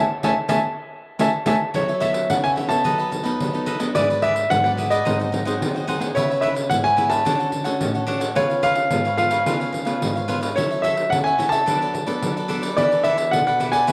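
Opening on a band accent, this playful, festive samba-choro passage in F# minor at 109 BPM sets an up-front concert grand piano melody, intimate, with audible action noise, deep bass and long sustain, over crisp picked cavaquinho and small, fingerpicked nylon-string guitar, while a jingly pandeiro enters at 0.2 s from a distant large room, the whole ensemble bathed in a wet spring reverb.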